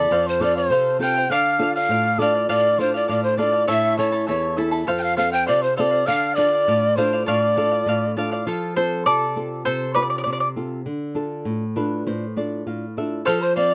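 A festive yet wistful Andean folk tune in D minor at 100 BPM in 2/4 opens with an up-front, airy wooden pan flute carrying the tongued melody with vibrato and chiff. A mellow, hollow cane quena traces a second line above it, over bright, shimmering double-string charango and dark, fingerpicked flamenco guitar. The winds drop away at 8.1 seconds, and at 8.5 seconds the charango takes a solo, with a guitar fill from 11.5 seconds, all in a close, detailed sound with light reverb.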